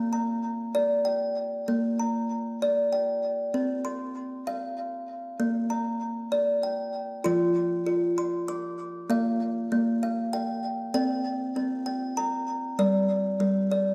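A 6/8 pulse moves at 65 BPM in a straight feel through this calm, gentle world meditative piece in Bb major pentatonic, tuned slightly low to A4 = 435 Hz. A solo kalimba plays from 0.0 to 13.9 s, ranging from F3 to D6 with a woody, hollow, ringing tone, close and up front, trailed by a diffuse ambient delay. The dark production sits in a wet echo chamber reverb with a small room ambience, and the music shifts into a new section at 7.2 s before the cut.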